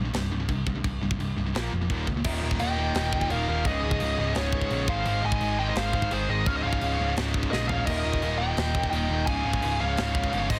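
Heavy and epic, this heavy metal excerpt drives at 171 BPM in a straight 4/4, cut from a longer piece. Two distorted rhythm guitars open together on a riff, one bright and compressed, the other high-gain and set in the background, over a growly, punchy overdriven bass and a tight studio drum kit with bright cymbals, a medium-tuned snare and china and splash accents. At 2.6 seconds a dark, bluesy overdriven lead guitar takes up the melody in a higher register, shadowed by a softer high-gain second line beneath it. The harmony moves from C5 to Bb5 and Eb5, then on through Eb, Db5, Ab and Db, with a short drum fill at 7.5 seconds before the return to Eb. The sound is dry, with little reverb, in a dense, heavily limited modern master.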